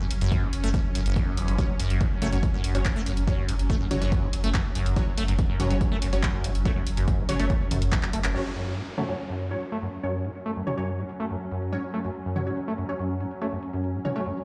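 A squelchy, resonant acid bass riff drives this intense, relentless peak-time techno cut in F# minor at 142 BPM, pumping through lush chorus and tape echo over a round sine sub bass with overdrive and a punchy electronic kick that both drop out around a drum fill at 8.0 seconds, while an analog drum machine's filtered handclaps, hi-hat and toms, aggressive detuned rave stabs entering at 1.6 seconds, a swarming, warbling drone in the background and a downlifter at 8.3 seconds fill a bare room through a big sound system, bathed in large studio reverb.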